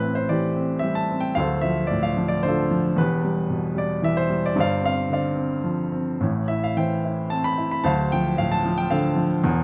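A clear baby grand piano carries this lyrical classical excerpt alone, its polished, present tone placed up front and spanning the keyboard from D1 to B5. The piece sits in A minor at 112 BPM in 3/4, with a rubato feel that lets the time breathe, and the mood is warm and hopeful. Over about 9.6 seconds the harmony moves through Am7, Dm7, Em7 and G7sus4 before returning to Am7 and Dm7. Close, detailed microphones capture the instrument with a light touch of reverb around it. Cut from a longer piece, the passage closes on the Dm7 chord.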